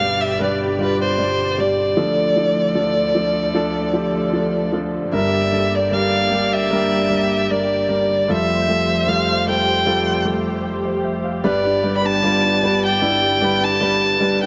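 This tender, emotional pop excerpt moves at an unhurried pace in straight 4/4, cut from a longer piece. A single bowed violin carries the melody up front, its tone warm, smooth and even with vibrato. Beside it, a polished grand piano plays a present accompaniment across a broad register, while a dark, woody studio string section sustains chords from a distance, bowed with vibrato. At 11.4 s a fingerpicked flamenco guitar enters in the background with warm acoustic arpeggios, arriving as the harmony returns to G after passing through Dm, Gm and Fadd9. A lush hall reverb with a long tail surrounds the ensemble, lending the recording an intimate yet spacious glow.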